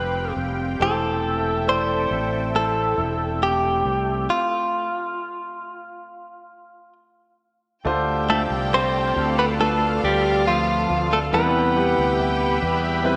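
A clean, direct-recorded electric guitar carries the melody from the opening, up front and compressed, with spring reverb and a slapback echo on its picked notes. Beneath it, a concert grand piano with a deep, natural low end plays accompaniment, while a lush, detuned unison pad holds bright sustained chords treated with chorus and phaser. A very quiet fingerpicked jumbo steel-string acoustic guitar adds arpeggios, and a growly fretless electric bass anchors the low register. This hopeful, emotional pop ballad moves at a slow 69 BPM in 4/4, cut from a longer piece and set in a wet echo chamber with a long reverb tail. The harmony moves from Fsus2 to Am/E before a stop at 4.3 seconds, and at 7.9 seconds a distant, focused studio violin section enters with a bowed, vibrato-rich second line over Dm7 and Cmaj7 chords.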